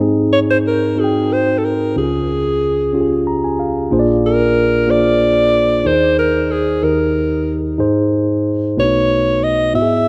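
A rough home-demo mix bathed in a moderate plate reverb gives this short gospel excerpt an intimate, roomy feel. A mellow tine electric piano sits up front with a clean, direct tone, laying down soulful chords across its full span from deep bass to bright upper notes in a lilting 6/8 with a straight feel. At 0.3 seconds a breathy alto saxophone enters on the melody, its smooth top and light vibrato giving the solo line a pop-inflected, tender quality that stays in a narrow middle register. Between 2.9 and 3.9 seconds the electric piano adds a brief fill. The harmony moves from the home chord through Db, Bb7 and Eb, closing on an unexpected B7 that leaves the uplifting mood hanging.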